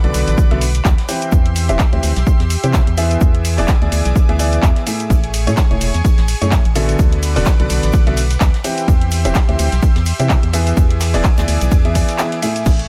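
Bathed in studio reverb, this euphoric, feel-good piano house excerpt at 127 BPM swings its 16ths over a D6, C/E, E7, Amaj7 progression, with a clear, woody upright piano riff carrying tape echo, a hollow, organ-like FM bass and a silky, detuned analog string pad with ensemble chorus all pumping with sidechain, driven by an up-front, overdriven electronic kick, a house kit of handclaps, bright hi-hat, ride, crash and shaker, a background layer of high-tuned snare on brushes and shaker, and a faint tambourine touch at 12.7 s just after a short break at 12.2 s.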